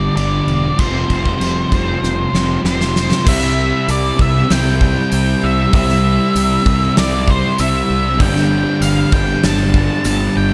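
A dark octave-fuzz lead guitar with digital delay sings a melody over a layered wall of crunchy, reverse-reverbed, double-tracked and chorus-drenched fuzz guitars and a growly overdriven bass, while a punchy gated 80s drum kit with a fat snare enters at 0.2 seconds, fills into the C-major shift at 3.3 seconds, and is joined by a jingly tambourine at 3.9 seconds in this dreamy, hazy 97 BPM shoegaze and dream-pop excerpt.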